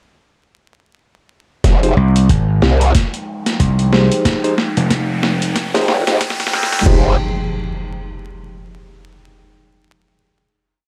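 Glitch hop at 92 BPM in F minor with a 16th-note swing, gritty and swaggering, this short piece is one build from 1.6 seconds to 6.9 seconds, where a growling, wobbling distorted bass sits up front beside a punchy, overdriven slap bass playing chopped phrases, over a thumpy pitched-down kick and a sampler-style kit of closed hat, high-tuned snare and crash with a drum fill. Bell-like electric piano stabs with digital delay and sidechain pumping ring over a dark, warbling lo-fi pad of sustained chords, while filter sweeps run through the build and a riser enters at 3.3 seconds. The riser and impact effects carry on through a final chord from 6.9 to 9.5 seconds, all under vinyl crackle and light reverb.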